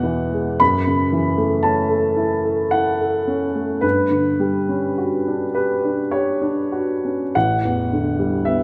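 A wet concert hall reverb with a long 2.2-second tail surrounds a baby grand piano that sits up front, its tone warm and open with a long sustain. This is a short passage of impressionist classical music for solo piano, cut from a longer piece, in 3/4 with a rubato feel that lets the pulse stretch and settle. The mood is mysterious and hazy, as the harmony drifts from E to F#m7 at 0.6 seconds, then to Gmaj7#11 at 3.8 seconds and an unresolved A9sus4 at 7.3 seconds. The piano alone carries the music across a broad span, from A1 in the bass up to B5. The hall's glow blurs the chords into one another, leaving the passage suspended.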